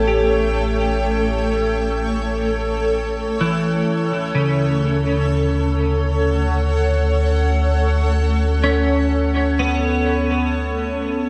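Soaked in plate reverb with a dreamy cassette-tape haze, this weightless, warm ambient excerpt at 63 BPM, tuned to A4 = 445 Hz, drifts from A7 to Dmaj7 at 3.9 seconds as an up-front granular cloud pad holds blurred, detuned, evolving chords under lush chorus, a bright, twangy twelve-string electric guitar picks clean, compressed arpeggios through analog chorus and diffuse ambient delay, and a round, mellow sub bass sits deep and prominent beneath them.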